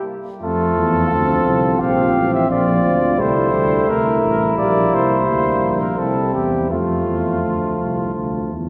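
Bathed in a wet church reverb, this noble, warm brass quintet excerpt in F major moves at 86 BPM in a 3/4 metre with uneven beats. A mellow trumpet with light vibrato and a soft attack sings the melody up front, entering alone at 0.0 seconds. At 0.4 seconds the rest of the group joins: a roomy flugelhorn on a distant second line, a clear, distant French horn and a trombone set in the background as accompaniment, and a soft-attacked tuba anchoring the bass up front, all moving through F, Gm/Bb and C before settling back on F, with the tuba the last to sound, at 8.7 seconds.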